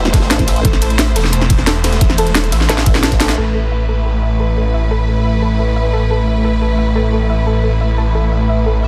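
Dark technical drum and bass at 176 BPM in A minor, this aggressive excerpt opens on a drop that runs to 3.4 seconds, with a drum fill from 2.7 seconds and a band accent at 3.3 before the harmony shifts from Am to Asus2. An up-front, overdriven drum and bass kit drives the section with a cracking snare, bright hats, crash and ride cymbals, all low-pass filtered, while a knocking, overdriven electronic kick sits loudest in the mix and a very quiet, gritty breakbeat kit with a medium-tuned snare and rolled-off top adds texture underneath. A formant-sweep wobble bass in pulse and sine tones appears briefly at the start and again from 2.7 seconds with chorus, and from 0.6 seconds a snarling, detuned sawtooth bass growls through distortion and a moving notch until the end. Above the low end, a rich, biting string section holds sustained bowed chords with vibrato, and a soft, round pluck plays arpeggios in the background with subtle chorus and delay, both pumping against the sidechain. 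The dense, heavily limited master keeps the small-room drum sound and the bass layers tight and forceful.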